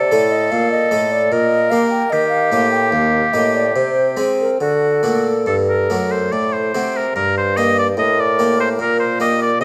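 An airy, wooden-toned baroque flute carries the melody of this introspective, flowing baroque-style sonata movement, its crisp attack and vibrato giving each phrase a gentle glow. Beside it, a clear oboe sits up front with a second line in classical style, while a mellow bassoon with light vibrato supplies the bass. A round, plucked harpsichord with a single set of strings fills in the continuo accompaniment in the French manner, adding a warm cushion beneath the winds. The music moves in 3/4 at about 73 BPM in G minor, with a rubato feel that lets the phrases breathe as the harmony travels from A diminished through Gm/Bb, Eb, Ab/C and D before settling on G minor at 7.2 seconds, where the opening material returns. All four players sound together throughout this short passage cut from a longer piece, set in a moderate, large studio reverb that adds a sense of space.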